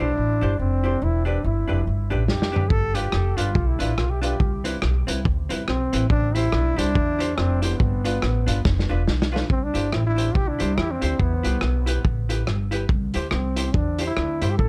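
A clear, up-front trombone carries the melody from the start in this cheerful, upbeat swung ska excerpt, over a dark, clean, compressed hollow-body jazz guitar with tape echo and a woody pizzicato upright bass. A muffled, lo-fi vintage drum kit with a tight kick and rolled-off top comes in with a fill at 2.3 seconds, and another fill at 8.6 seconds leads into a passage of plain major and minor chords from 9.5 seconds. The trombone also carries tape echo, and light reverb rounds out the mix.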